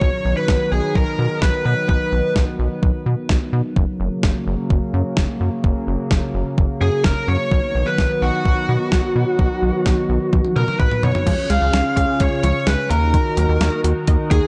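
Synth-pop with a nostalgic, upbeat feel, this excerpt from a longer piece sets a biting, overdriven electric lead guitar with tape echo over a shimmering, chorused pulse-width pad, a rubbery, hollow square bass and a thumpy, sampler-style 12-bit drum machine, with the guitar pausing between 2.3 and 6.8 seconds, a drum fill arriving at 10.3 seconds, and a very quiet, detuned unison pluck adding bright arpeggios from 11.3 seconds in a dark production with light reverb.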